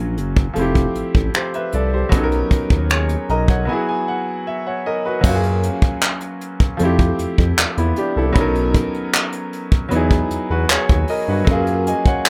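Tender and smooth, this contemporary R&B excerpt in 4/4 pairs an up-front, intimate grand piano, its action noise audible and its notes ringing long over lush ninth chords, with a mellow synth bass carrying vibrato and a brushed acoustic kit of punchy kick, hi-hat, finger snaps, handclaps and crash in a small, dry room, the piano taking a fill from 2.9 seconds into a break that ends at 5.2 seconds.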